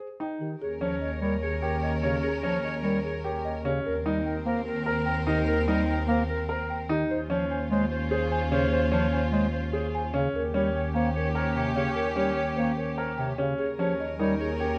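A straight, propulsive 4/4 pulse drives this hypnotic minimalist classical passage, cut from a longer piece, with a bright, up-front baby grand piano spinning arpeggios and a woody soft-mallet marimba carrying the melody from the opening moment. By 0.6 seconds the rest of the ensemble has joined: a mellow bass clarinet plays accompaniment, a vintage-toned clarinet adds a second line, a distant violin section holds smooth, vibrato-laden chords, and a focused bowed double bass section sits close on a single low note. Light reverb and close, detailed miking frame the slowly shifting harmony, which rests on that bass note from its entry onward.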